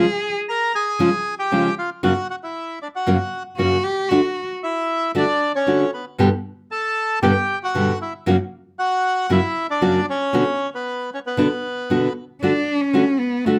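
Rubato and in 4/4 at 116 BPM, this tense, sultry B-minor tango fragment from a longer piece sets a reedy, dark bandoneon melody with slapback echo over fingerpicked classical nylon-string guitar accompaniment, while a bowed cello with vibrato and portamento adds brief second-line phrases before taking a short expressive solo from 12.4 seconds, all heard through close, detailed microphones with light reverb.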